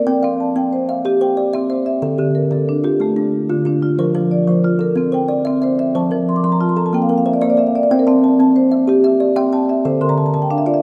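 Hypnotic and warm, this short cut from a longer piece in the southern African traditional style sets a kalimba and a marimba spinning interlocking, mbira-style arpeggio cycles in a straight 12/8. The kalimba is woody, mellow and ringing, while the marimba, struck with medium mallets, sounds full and close-miked, and both sit up front in a rough home demo mix bathed in a lush plate reverb. The harmony moves through C, Dm, F and Bb, and the marimba breaks into fills at 6.1 and 9.9 seconds.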